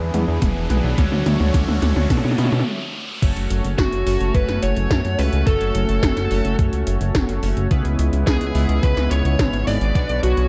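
Over a straight 4/4 pulse of thumpy, overdriven electronic kick and 80s-style electronic pad drums with metallic hats and gated reverb on the snare and toms, this moody, nostalgic synthwave excerpt opens with a drum fill, an electronic riser and a filter sweep on a glossy, chorused polysynth playing stabs, breaks off briefly at 2.7 seconds, then brings in a distorted, high-gain lead guitar with delay alongside a second line from a very quiet, pure FM synth bell at 3.8 seconds, carried by a fat, detuned sawtooth bass up front and a smooth analog pad in the background, both pumping with the sidechain, in a dark production with light reverb.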